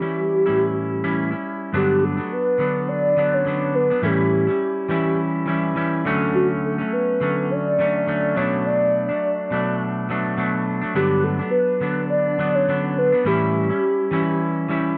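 This indie pop excerpt drifts by with a hazy, dreamy mood at 104 BPM in 4/4, with a light swing on the sixteenths and a lydian colour centred on G. A hollow, woody synth lead with a clarinet-like character carries the melody from the start until 14.4 seconds, its soft attack and sustained, warbling tone thickened by a detuned, sub-octave layer and a touch of noise. Beneath it, a clean electric guitar plays the accompaniment throughout, picked and twangy, sitting up front with a bright edge, a subtle chorus and a vibrato effect. The harmony moves from A7 to Gmaj7 at 1.7 seconds, then through A7, Dmaj7 and Bm7 before returning to Gmaj7 and A7. Light reverb surrounds a dry, close sound that recalls a 1970s studio recording.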